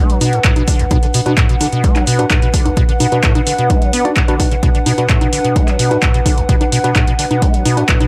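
Acid house with a driving, hypnotic pull, this excerpt rides a punchy, tape-warm electronic kick, placed up front, alongside an analog drum machine's congas, handclaps and metallic hats, all sitting on a single B minor chord. A squelchy, resonant square-wave acid bass repeats its riff with a filter sweep, overdrive, chorus and delay, while a warbling, nostalgic pad of detuned, wave-folded tones sustains with sidechain pumping. From 1.3 seconds a clean tine electric piano, heard through a combo amp, adds delayed stabs, the whole mix set in light digital ambience.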